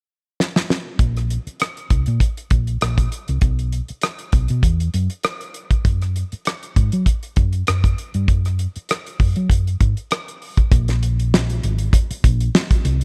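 Cinematic and smooth, this lush 1970s-style soul excerpt at 99 BPM in 4/4 with a light sixteenth-note swing opens with a drum fill at 0.4 seconds from a damped, dry acoustic kit with a fat snare, tight kick, rim clicks and hi-hat, joined at 1.0 seconds by a dark, round, punchy amplified hollow-body short-scale electric bass played with the fingers, both sitting up front in a close, nearly reverb-free sound before the music moves into a new section at 10.7 seconds.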